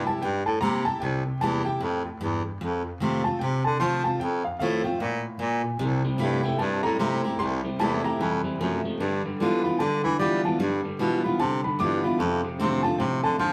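Swinging in a rowdy, rollicking 4/4, this rockabilly excerpt sets a full-bodied picked acoustic guitar and a breathy, intimate baritone saxophone with vibrato carrying the bass line under a dark, woody upright piano melody with audible action noise and a slightly detuned edge, before a twangy, slightly broken-up electric guitar riff joins at 5.8 seconds, all captured as a band playing live in one room washed in a wet, large studio reverb as the harmony moves through C7, F7 and G7.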